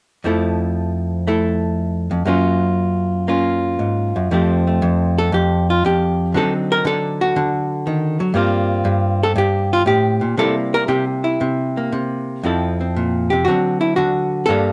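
Sophisticated and relaxed, this short cut from a longer solo jazz piece sits in F major at 118 BPM in 4/4, with a swung, rubato feel. A lone archtop guitar, miked and amplified, carries everything from 0.2 to 14.7 seconds, its dark, clean, hollow-body electric tone picked and placed up front, ranging from F2 to Bb4. The harmony moves from Fmaj7 through Gbmaj7, then into a second section from 4.3 seconds built on Fadd9, D7b9, Gm11 and C7 before returning to Fmaj7 and D7, all recorded live in one room with a moderate studio reverb.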